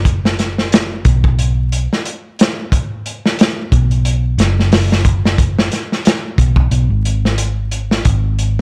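A crunchy breakbeat drum kit anchors this brooding, cinematic trip hop excerpt, its hi-hat, tight kick and medium-tuned snare carrying a saturated, gritty 12-bit sampler crunch with a rolled-off top. A hollow-body short-scale electric bass played with the fingers sounds from the very start, its round, amped tone staying low between F#1 and B1, and the drums join up front at 0.1 seconds. The groove moves at 90 BPM in 4/4 with a light swing on the sixteenths, settled in G# minor. The production is dark and close, with little reverb and a bed of vinyl crackle that adds to the atmosphere. This 8.6-second cut from a longer piece holds a single section throughout, giving it the feel of a moody film cue.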